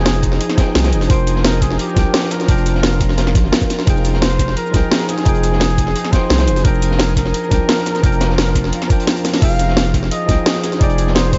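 Liquid drum and bass at 173 BPM in F dorian, this rolling, lush excerpt from a longer piece drifts between Fm9 and Gm7/F over a straight 4/4 groove. A smooth, jazz-style flugelhorn carries the solo melody with vibrato and scooped notes, trailed by tape echo, while a worn, slightly out-of-tune tine electric piano plays accompaniment through dub echo, sounding as if heard through its built-in speakers. Beneath them, a shimmering, ethereal pad sits in the background with octave-up shimmer, granular texture, chorus, phaser and sidechain pumping. A deep, thick sine sub bass with tube saturation sits up front, joined at 0.2 seconds by a knocking, layered electronic kick. The drums combine an up-front kit with a cracking snare, cabasa, crash and hi-hat and a dark, gritty breakbeat kit with a rolled-off top tucked behind it, both touched by tape echo, with a drum fill at 9.2 seconds. A barely audible downlifter opens the first 1.1 seconds, and the whole mix stays echo-heavy in a small room ambience with a soft, dulled top end.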